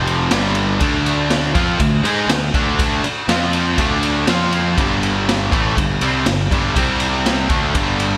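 A straight 4/4 hard rock drive at 121 BPM sets up an aggressive excerpt where a raw, punchy garage drum kit of kick, snare and ride, gritty with gated reverb and pushed up front, drives a growly fuzz picked bass and two bright overdriven guitars riffing in the background, one cranked stack thickened by analog chorus, through power chords moving among G5, D5, F5 and C5 in a lush hall with a bright 1980s-style digital sheen.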